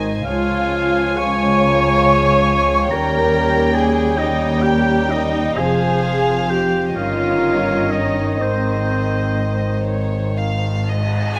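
A soft, intimate orchestral sound sits in a moderate scoring-stage reverb, giving this brief classical fragment, cut from a longer piece, a warm and lyrical mood with a slow, rubato lilt in six. Violins carry the melody with light vibrato and a hushed sul tasto touch, while a second, darker violin section, a vintage-toned clarinet and a woody-timbred bowed cello line sit further back. An airy, very quiet flute and a roomy, distant-sounding oboe add second lines from 0.3 and 0.2 seconds until just before 10 seconds, joined over the same span by a bowed viola accompaniment. A mellow French horn section holds sustained chords in the background, the bassoon adds a gentle accompaniment, and the double basses anchor the bass beneath the cellos. The harmony moves from Db through Eb7 and Fm to Eb7/G before settling on Ab, giving the passage a calm sense of arrival.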